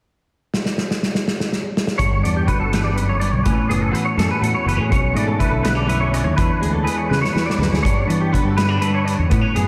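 A twangy, compressed clean electric guitar sits up front, picking high arpeggios through ensemble chorus and a diffuse ambient delay in this wistful, intricate stretch of math rock and midwest emo in a lilting 6/8. A loose indie drum kit opens alone at 0.5 seconds with a fill on hi-hat, punchy kick and medium-tuned snare; its acoustic sound is rolled-off on top, pumping in its studio room and placed close to the listener. At 2.0 seconds the rest of the band arrives: a scooped, hollow-body semi-hollow electric guitar plays fingered accompaniment through analog chorus, while a growling fingered bass, overdriven and bright, plays the low end. The harmony moves from Gmaj7 through A69, Bm11 and E7 before returning to Gmaj7, and the drums throw in another fill around 7.1 seconds. The dreamy mix is soaked in a lush hall reverb layered with a small room, giving the cut-off excerpt a hazy, floating glow.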